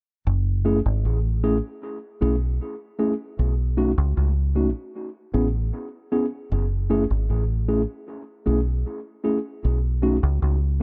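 A deep, fingered electric bass opens at 0.3 seconds, dark, round and punchy, its foam-muted tone sitting up front in the low register. Just after, at 0.6 seconds, a mellow tine electric piano joins with a clean accompaniment through its built-in speakers, touched by a dub echo. This fragment of a longer lovers rock reggae piece moves at an unhurried, straight four-beat pace and carries a longing, bittersweet mood. The harmony drifts through lush extended chords, F#m9 to B9 and Amaj9, back to F#m9 before settling on Bsus2. Both parts stay close and present in a dry room, giving the pair an intimate, direct sound until they finish together at 10.8 seconds.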